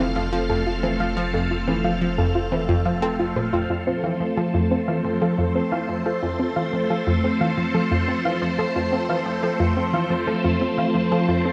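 A swirling, vintage string machine opens this excerpt from a longer piece of ambient, sequencer-driven space music, holding bright, up-front sustained chords through ensemble chorus and phaser over a single F chord. Alongside it from the start, a soft round pluck spins gentle, mellow arpeggios through chorus and analog delay, while a nasal, detuned analog pluck plays a lower riff coloured by chorus, phaser and its own analog delay. A deep sub bass holds a low F beneath them until 3.7 s. At 4.3 s an airy, breathy, wind-like tuned noise texture drifts in, in the background, carrying its own built-in reverb. The steady, straight 4/4 pulse and wet concert hall reverb give the music an expansive, cosmic feel, and the whole piece is captured on cassette tape.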